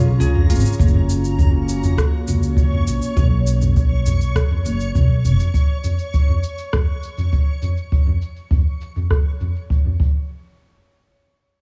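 Folktronica in a delicate, hopeful mood, this excerpt sits in a straight 4/4 and is cut from a longer piece. A warbling, nostalgic pad of detuned, lo-fi tones holds sustained chords through chorus and reverb, while a fingerpicked Celtic harp rings out arpeggios roughened by 12-bit sampler grit and tape echo. Up front, a woody pizzicato upright bass anchors the low end, and a reversed, granular texture hovers high above with a bright, dreamy shimmer until about 7.9 seconds. An organic electronic drum kit with crisp hats, cabasa, rim clicks and toms comes in at 0.2 seconds, its parts darkened by low-pass filtering and a filter sweep. A boomy, dark brushed kick joins at 0.8 seconds, and the whole sits in a small, lightly reverberant room.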